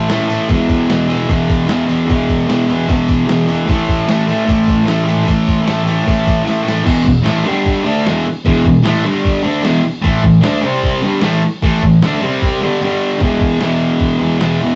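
A straight 4/4 beat from a muffled, pitched-down sampler-style drum kit, with thumpy kick, snare, hi-hat and crash set low beneath the up-front, double-tracked fuzz guitar, gives this swaggering, raw garage rock clip from a longer piece its push. The bright, compressed guitar riff moves through E5, A5, G5 and C5 power chords, and a drum fill at 6.5 seconds leads into a new section, while kick and snare drop out at 12.8 seconds before the riff returns to E5 at 13.2 seconds. The rough rehearsal-room recording has a dull top end and a moderate touch of studio reverb.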